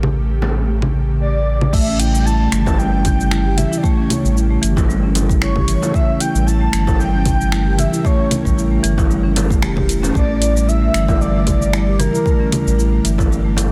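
A dense, heavily limited mix with light reverb carries this mystical, hypnotic organic downtempo passage at 114 BPM. A round sine sub bass sits up front beneath an ethereal, airy pad with ensemble chorus and sidechain pumping, alongside an afro-pop kit of congas, cabasa, finger snaps, metallic hats and crash with a soft-clipped snare, plus a small, distant frame drum from 0.4 s. A breathy, flute-like synth lead with vibrato and delay arrives at 1.2 s, and mellow soft-mallet marimba arpeggios and a deep electronic kick join at 1.7 s.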